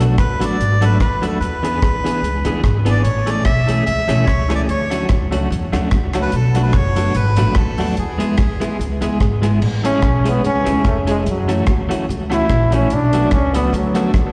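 A lightly swung 146 BPM ska groove in A major rides on a dark, tight deep reggae drum kit with crash, hi-hat, kick and rim click, and a woody, growly upright bass played pizzicato up front, while a twangy clean electric guitar with tremolo and a worn, slightly detuned upright piano stabbing in the background fill out the bouncy, upbeat accompaniment. A punchy harmonica carries the melody from 0.2 to 9.2 seconds, all through a chord cycle that moves from Bm7 and E7 through Amaj7 and Dmaj7. At 9.9 seconds a bright, close-miked trombone with vibrato takes an up-front solo over Amaj7, F#m7 and Bm7, its tape echo, slapback and plate reverb sitting in the recital-hall ambience of a live gig heard through the venue's PA, before this fragment of a longer piece cuts off.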